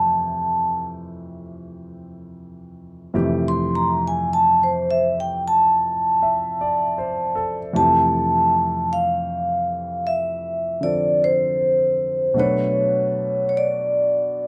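Swung eighths at a slow 52 BPM in 4/4 carry this tender, intimate jazz ballad fragment in F major, where an up-front vibraphone with medium mallets, metallic and ringing with a slow motor vibrato, takes a solo over the first 7.8 seconds and sings the melody throughout, while a natural, warm concert grand piano with deep bass and audible action noise supplies accompaniment from Fmaj9 to a shift to Bm9 at 12.3 seconds, captured by close, detailed microphones in a dry space.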